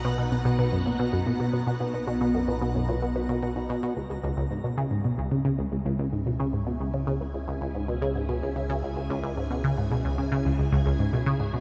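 Expansive and hypnotic, this excerpt of sequencer-driven ambient space music moves at 111 BPM in C# dorian, shifting from B to C#m at 4.0 seconds. Up front, a squelchy, resonant blip pluck repeats a low riff through phaser and delay, while a round, deep analog bass sits beneath it. In the background, a warbling, lo-fi pluck spins arpeggios through chorus and delay. A swirling, vintage string machine holds phased chords that fade in from 4.0 seconds, and a twinkling granular texture sparkles overhead until that point, the music floating in a vast, echoing space with a huge reverb.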